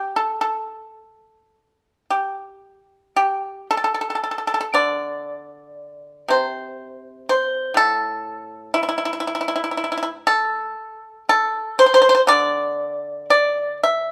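Contemplative and elegant, this short passage from a longer piece of Chinese traditional music is a solo for pipa. Played in a free, rubato feel in 4/4, it moves at a slow pace of roughly 54 to 63 BPM in the A yu mode. The pipa is plucked with fingerpicks and sits up front in the mix, its tone dry and percussive with a warm, acoustic body, ranging from A2 up to E5. A brief opening phrase gives way at 2.6 seconds to a longer second passage that carries on until the clip ends at 14.1 seconds. The performance was recorded live in a single room and carries a light reverb.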